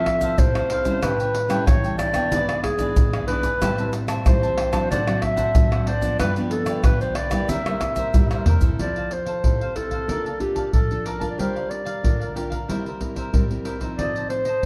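A straight 4/4 samba-and-choro groove at 93 BPM, driven by a deep surdo, pandeiro, tamborim and egg shaker placed up front, carries this playful, festive excerpt, where a mellow clarinet sings the jazz-style solo melody with vibrato and a soft subtone over a crisp picked cavaquinho and a bright, full-bodied fingerpicked nylon-string guitar with audible finger squeaks; a drum fill at 8.3 s leads the music from C major into F major at 8.8 s, all within a dark, warm production and a wet, large studio reverb.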